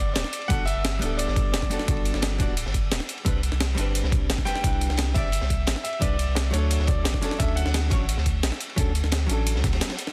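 A deep, round sine sub bass sits up front from the start and holds until 9.8 s beneath this uplifting liquid drum and bass passage, cut from a longer piece. A clear concert grand piano carries the melody through dub echo, its audible action noise and long sustain giving an intimate, polished feel until it stops at 8.2 s. A clean, picked hollow-body electric guitar, compressed and also treated with dub echo, supplies accompaniment over Gmaj9, Cmaj9 and Dmaj7 chords. Two drum kits drive the straight groove: a gritty, pitched-up sampler-style breakbeat kit on hi-hat and snare, and a quieter acoustic kit with dark cymbals, a high-tuned snare and a saturated, rolled-off top, high-pass filtered on cymbals, snare and room. They are joined by a thumpy, tape-warm electronic kick. The mix is dense and heavily limited with studio reverb, closing on a brief break.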